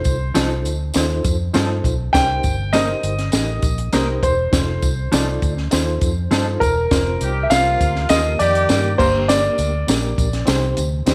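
An up-front grand piano carries the melody over this driving, urgent cut of uptempo 1960s-style soul at 101 BPM, backed by a barky, overdriven reed electric piano with fast tremolo, a jingly tambourine, a round, foam-muted fingered bass, and a compact cocktail kit with a punchy kick, high-tuned snare and dark cymbals, while a mellow, clean electric guitar with tremolo adds stabs until 6.5 s and a smooth horn section with light vibrato plays a second line from 7.2 to 9.0 s, all set in moderate plate reverb.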